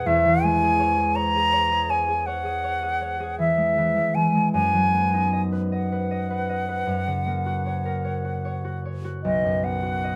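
An airy silver concert flute carries the melody with vibrato and a soft attack, sitting up front alongside a mellow, ringing concert harp that fingerpicks the accompaniment throughout this brief romantic classical passage. The mood is tender and serene, moving in an unhurried, rubato 12/8 while the harmony settles from C#m/E through B/F# and F# to rest on B at 9.2 seconds. Light reverb surrounds the duo.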